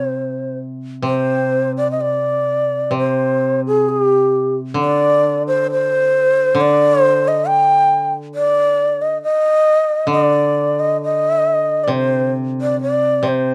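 A dark, warm production sets this solitary, austere piece of Japanese chamber music in a small room with a moderate touch of reverb. It moves at about 66 BPM in 4/4, though the beats are uneven and the pulse bends freely in rubato, in the hirajoshi mode on C. Up front, a long bamboo shakuhachi carries the melody between G4 and G5, its end-blown tone airy and soft in attack, shaded with vibrato. Lower in the mix, a koto plucked with fingerpicks holds the accompaniment in a narrow span from C3 to D3, its sound dry and woody. Both instruments play throughout, from a brief opening of about one second into the main passage that runs from 1.0 to 13.5 seconds, as the fragment is cut from a longer work.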